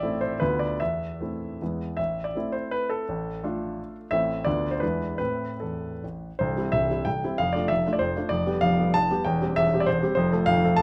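A warm grand piano with short sustain sits up front in this wistful, capricious romantic classical dance in 3/4, its dotted rhythms stretched by rubato between 137 and 204 BPM across a range from C1 to A5, moving from A minor to C major at 6.4 s within moderate large-studio reverb caught by close, detailed microphones in a brief fragment of a longer piece.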